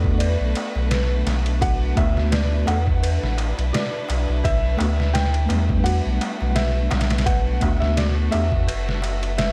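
A swung 85 BPM trip hop groove in 4/4 anchors this melancholic, brooding B minor excerpt, built on a gritty, pitched-down sampler kit with a thumpy kick and ride, an up-front round sub bass, and a crisp metal-shelled darbuka sitting distant in the background. A soft, felt-muted upright piano carries the melody with audible action noise and tape echo, over a worn, slightly out-of-tune tine electric piano with tremolo that drops out at 8.5 seconds. Expressive bowed violins with vibrato and portamento hold sustained chords, while an eerie, inharmonic synth bell traces arpeggios through chorus and phaser in a dry, close mix moving from Bm7 to E7sus4/B.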